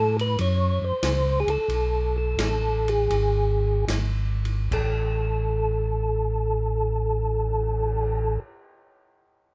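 Soul jazz organ trio in A major, greasy and bluesy, swinging in 4/4 at a tempo between 69 and 97 BPM that slows over the first 4.7 seconds of this short fragment cut from a longer piece. Up front, a percussive tonewheel organ carries the melody in a narrow range from G#4 to C#5, its clean, round tone marked by third harmonic percussion, chorus vibrato and a slow rotary speaker. Beneath it, a second, mellower tonewheel organ handles the bass line between G#1 and A2, lightly overdriven for a dark, gritty edge and likewise turning through chorus vibrato and a slow rotary speaker. An open acoustic jazz kit enters at 0.2 seconds further back in the mix, with dark cymbals, crash and cymbal swells, hi-hat, ride, a medium-tuned snare and a boomy kick heard in a natural small room. The harmony moves from F#5 to Asus2 before giving way to a chordless stretch at 3.1 seconds, and light reverb gives the trio a touch of space.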